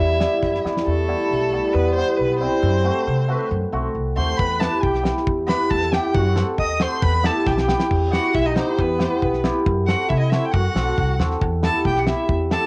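This bittersweet, soulful klezmer excerpt opens with violin, musette accordion, cimbalom and upright bass together, in E harmonic minor at 137 BPM in a straight 2/4, while a damped 70s drum kit slips in at 0.2 seconds for a brief fill around 0.6 seconds. The rich, smooth bowed violin carries the melody up front with an even vibrato that still sounds slightly distant, and it takes a solo through the first section until a drum fill at 7.5 seconds leads into the next. Behind it the reedy musette accordion plays a second line in the background with the boxy character of a small room, and the hammered cimbalom rings out in the foreground, acoustic and shimmering. The woody, dark pizzicato of the steel-strung upright bass sits beneath the harmony as it moves between Em and F#dim. The drums return at 4.4 seconds, dry and mid-forward with a fat snare, tight kick and dark cymbals. It has the feel of a home cassette recording, with a moderate spring reverb around the ensemble and cassette tape coloring the violin, accordion, cimbalom and drums.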